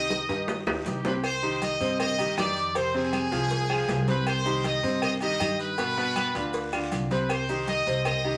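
Salsa in C minor at 158 BPM, driving and danceable, where a brilliant, tight trumpet section with vibrato carries the melody up front over a clear upright piano with audible action noise and a thumpy, dark pizzicato upright bass on gut strings, while background congas, high-tuned bongos and cowbell, ringing timbales and agogo bells, raspy guiro, grainy maracas and woody claves fill out the percussion, a drum fill opens from 0.1 to 1.2 seconds, and the chords move from Cm through Fm and G7 back to Cm in a short cut from a longer piece, set in a wet studio ambience.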